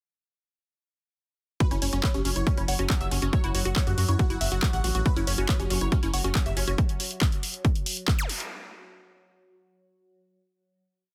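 A driving four-on-the-floor kick, overdriven and up front, sets a 139 BPM psychedelic trance groove from 1.6 seconds with programmed closed and open hats and claps, while a round, deep analog bass rolls in sixteenths, a woody wave-folded pluck plays an accented acid riff with chorus and delay, a huge detuned supersaw repeats a sixteenth-note melody over a pedal note with phaser and sidechain pumping, and a resonant drone with moving overtones holds a high note in the background, all intense and hypnotic under a dense modern master, before the drums continue alone and an electronic zap strikes at 8.2 seconds.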